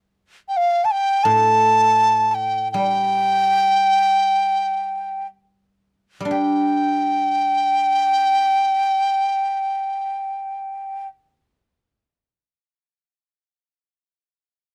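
A dry, gritty recording with transformer saturation and light reverb carries this festive, pastoral fragment of Chinese traditional chamber music in free time, where a large dizi enters at 0.5 seconds up front with a hollow, airy, buzzing-membrane tone, soft attack and vibrato, slowing through its opening phrase, while a quieter guzheng, joining at 1.2 seconds and ringing on until 12.3 seconds, adds silvery fingerpicked accompaniment beneath it.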